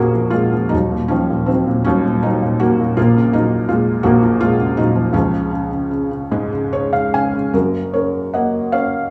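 A felt-muted upright piano plays alone, soft and intimate with a short, mellow sustain placed up front, in this calm, lyrical classical excerpt in Db major and 6/8, moving with rubato at a slow 48-56 BPM through Bbm, Ebm and Db harmonies before a brief fill at 6.3 seconds leads into a new section on F# at 7.5 seconds, the piano set in a moderate recital-hall reverb over small-room ambience.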